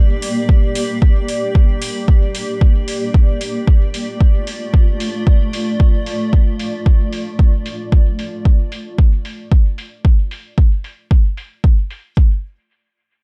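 A dark, warm production with a digital ambience frames this meditative, nocturnal dub techno excerpt, cut from a longer piece and moving in 4/4 with a light swing on the sixteenths. A granular cloud pad opens the track, holding sustained chords that shift from Gm to Dm; its blurred, evolving texture is detuned and full-bodied, bright within its own built-in reverb, and it pumps against a sidechain before ending at 7.9 seconds. An overdriven electronic hi-hat enters almost at once, its metallic tone softened by a low-pass filter and kept low in the mix. The deep, layered electronic kick drum, also overdriven, sits up front as the loudest part and carries on until 12.3 seconds. A brief final section closes the cut with the harmony dropping away.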